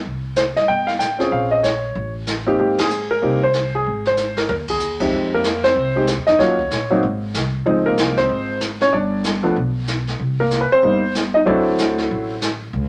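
Warm and swinging, this short cut from a longer jazz piano trio piece features a dark, mellow grand piano up front with audible action noise, a woody, thumpy pizzicato upright bass on gut strings, and a distant, roomy brush kit with dark cymbals and a boomy kick, pulling together for band accents at 2.8 and 4.7 seconds, the second landing during a brief drum fill.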